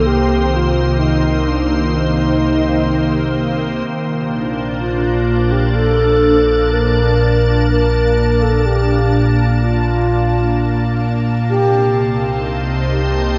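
A slow, straight 4/4 pulse at 63 BPM carries this serene, weightless ambient excerpt in Bb major, moving from Cm7 to Bbmaj7 at 3.9 s and back to Cm7. An airy alto flute with vibrato sings the melody through a diffuse ambient delay, over an up-front, organ-like pad of pure, chorused sustained chords, a round sine sub bass and a very quiet, string-like drone with a tense, phased edge. From 8.9 s a faint glassy texture of drifting overtones joins, and the dreamy mix sits in a lush hall reverb with a softened top end.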